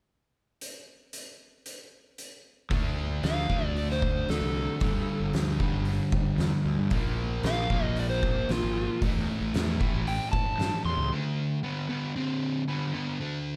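Gritty and brooding, this blues rock and southern rock excerpt opens with an oversized, low-tuned drum kit alone, its fat snare and punchy kick saturated and up front in a bright stone room, before a sludgy, double-tracked distorted guitar riff and a growly fuzz fingered bass enter at 2.7 seconds and a dark overdriven slide guitar carries the melody from 3.2 seconds over Dm7, G5, Bb5 and A5, with the riff guitar holding on alone over D5 after 11.1 seconds.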